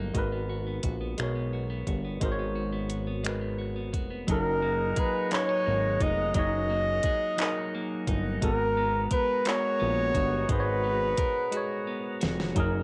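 Slow six-eight R&B at 58 BPM, sensual and tender, cut from a longer piece. A smooth, produced drum kit with soft kick, fat snare, dark hats, snaps and handclaps sits up front beside a thick, detuned analog bass, while a worn, slightly out-of-tune electric piano through a combo amp and a dark, compressed clean guitar fill in over G#m9 and F#69 chords. At 4.3 seconds a close-miked flugelhorn enters with scooped, jazz-style solo notes and slapback echo, joined by a background tonewheel organ on slow rotary and a very quiet, vintage horn section playing tight stabs, before a drum fill at 11.5 seconds.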